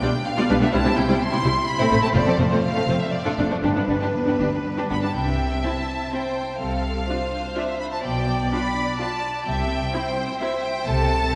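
Cheerful and spirited, this quick classical-period movement for string orchestra moves in 3/4 at 126 BPM in C major, its pulse given a flexible, rubato feel. Up front, a rich violin section carries the melody high in its range with focused vibrato, while a second violin line sits further back as a lush, distant layer beneath it. A clear viola section fills in the accompaniment, and the cellos, with their smooth top, join an even, lightly vibrant double bass section to anchor the bass. The harmony moves through bright turns from G7 to C, A minor, F and D minor before settling into a second section at 5.2 seconds that passes through a rootless Dm7/C and G/B to land back on C at 9.5 seconds. A deep church reverb with a long 2.8-second tail bathes the ensemble, lending this short fragment of a longer piece a spacious, resonant glow.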